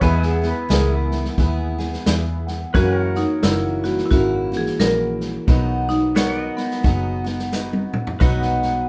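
Set in a moderate studio reverb, this heartfelt, easygoing swung honky-tonk and classic country excerpt opens with a twangy, slightly broken-up electric guitar that stops at 1.3 seconds, while a full-bodied picked dreadnought acoustic guitar, a clean pedal steel guitar with volume swells, a mellow grand piano in the background with audible action noise and a fill of its own, a round, foam-muted fingered bass and an up-front vintage drum kit with a tight kick carry on beneath a marimba melody played with medium hard mallets from 2.8 seconds, before a drum fill at 7.5 seconds.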